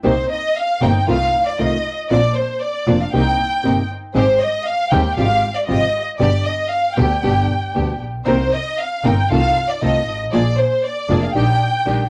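A violin section, double bass, nylon-string guitar and string section all begin together at 0.0 seconds in this nostalgic, elegant tango in C minor, cut from a longer piece and moving at 117 BPM in 4/4 with a rubato feel. The bowed violin section carries a lush, expressive solo line, its vibrato sounding both distant and up front. Beneath it, a small, woody nylon-string guitar with old strings provides thumb-plucked accompaniment, while a single bowed double bass sits up front with a focused, smooth-topped tone. Quieter string-section stabs add a rich, even colour, treated with analog delay. The harmony moves through Cm7, F7/C and Bbadd9, passing Abmaj7 and G before closing on Ebmaj7/Bb, all heard through a dry, gritty cassette-tape recording with light reverb.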